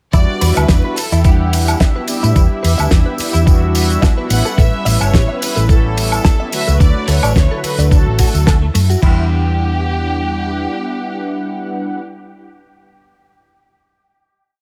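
A four-on-the-floor electronic kick, thumpy, gritty and up front, drives this groovy, sleek nu-disco piece at 108 BPM in 4/4 with a light 16th-note swing. A damped 70s drum kit adds a disco backbeat with a fat snare, dark cymbals, hi-hat, ride, crash and a high woodblock, while a close, dry tambourine sits in the background. A round, amped hollow-body bass plays a prominent syncopated riff, and a bright, clean, direct-recorded electric guitar repeats a 16-step sequence with ensemble chorus behind it. Mellow synth brass punches detuned sawtooth chord stabs in rootless voicings with chorus and vibrato, and from 0.5 seconds a lush unison pad holds a high note with sidechain pumping. Over the top, a distant violin section carries an expressive bowed melody of call phrases with portamento and dub echo, moving through Em7, A7 and D in E dorian. The drums drop out at 9.1 seconds and the guitar follows moments later, leaving the bass, brass and violins on the closing Em7, with the strings and brass ringing until 12.0 seconds.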